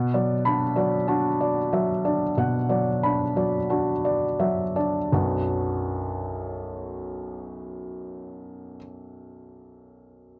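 A felt-muted upright piano plays alone, soft, mellow and up front, in this reflective, intimate neoclassical minimalist fragment in B minor, moving at a rubato 42-50 BPM in 4/4 with tuning at A4 = 438 Hz. Spanning B1 to B5, the playing slows through the opening 5.1 seconds before shifting into a new section that runs to 10.4 seconds. A modest booth ambience and the worn, warbly pitch drift of old cassette tape colour the close sound.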